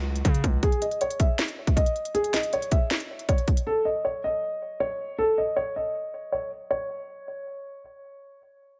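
This melancholic, menacing trap cut opens on a very quiet, lush bowed string section holding an F#m/C# chord over a heavy, saturated 808-style bass with a noise layer, both dropping out at 0.6 seconds. Crisp hats, a sharp snare and a hard-clipped kick from the up-front electronic trap kit drive a half-time feel at 158 BPM until 3.7 seconds. From 0.6 seconds, a dark, boxy grand piano carries the melody through a low-pass filter and delay until 7.8 seconds, all in light reverb.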